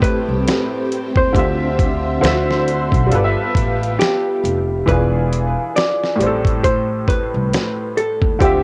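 Lo-fi hip hop with a hazy, melancholic mood, this short cut from a longer piece moves with a relaxed swing in 4/4. A dusty, sampler-style drum kit sits up front, its compressed, gritty sound built on a thumpy kick, a medium-tuned snare and hi-hat, all coloured by cassette tape. A bright upright piano, also up front, carries the accompaniment with a brilliant yet worn, slightly detuned woody tone through cassette and a low-pass filter, while a dark, clean hollow-body jazz guitar plays the picked, compressed melody. A vintage organ-like ensemble string pad holds sustained chords with a fast attack and chorus shimmer, and a growly, pizzicato upright bass joins at 0.3 s with steel-string bite and transformer saturation. The harmony drifts from Am9 through Dm11, D13, G13 and E7b9 before settling back on Am9, all wrapped in light reverb and the digital ambience of a home cassette recording.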